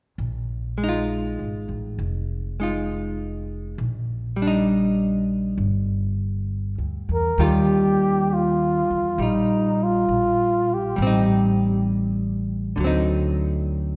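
A breathy, mellow flugelhorn with vibrato takes the solo melody from 7.1 s to 11.9 s in this intimate, romantic swung jazz ballad excerpt, set over a woody, growly pizzicato upright bass and a dark, clean fingered hollow-body electric guitar, all three up front in the wet reverb of a church or concert hall.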